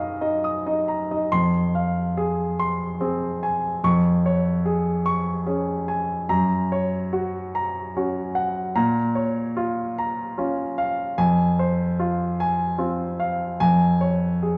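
A solo grand piano sits up front in a wet recital-hall reverb, the sound of a church or concert hall giving each short-sustained note a lingering halo. This is neoclassical minimalist piano, intimate and wistful, moving in an unhurried 6/8 with a freely breathing rubato. The instrument's tone is warm, present and polished, spanning from F2 up to Eb6. After a brief opening gesture, the main passage begins at 1.3 seconds and unfolds through a slow cycle of chords: Fm, Db/F, Gb and Bbm, then back to Fm and Db/F. Cut from a longer piece, the recording ends at 14.6 seconds.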